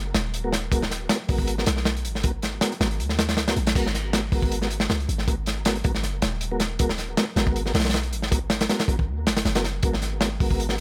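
A deep, boomy 808-style bass opens this frenetic, raw drum and bass cut at 0.0 seconds, its sine tone carrying a noise layer with a fast attack and a decaying tail. A crunchy breakbeat kit follows at 0.1 seconds, saturated and gritty, with a tight kick, a medium-tuned snare, a hi-hat and dark crash cymbals sitting up front and mid-forward, their top end rolled off. At 0.4 seconds, a soft, flute-like tonewheel organ adds stabs colored by chorus vibrato, key click and a dub echo, played through a stationary speaker. The jungle groove carries a slight swing on the 16ths, and the whole fragment works as a drop taken from a longer piece, repeating one section. The room is dry, with the gritty drums leading the mix over the more mellow bass and organ.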